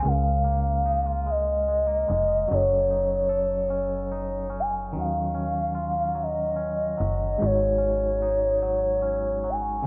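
In a slow, straight 6/8 at 49 beats per minute (counted in dotted quarters), this brief R&B passage in Db major feels sensual and intimate. A smooth, gliding portamento lead carries the melody between Db5 and Ab5, its mellow sine tone detuned and touched with vibrato, chorus, phaser and slapback echo, and it sits up front. Beneath it, a barky tine electric piano plays bright accompaniment, lightly overdriven through a combo amp with a fast tremolo. A clean, picked, compressed electric guitar adds a twangy second line, and a snappy FM bass with a fast, metallic attack and a decaying tone sits close in the mix before dropping out at 9.8 seconds. The harmony moves through Db6, Gbm6, Ebm9 and Ab7sus4, framed by light reverb, digital ambience and a low-pass filter that soften the whole cut from a longer piece.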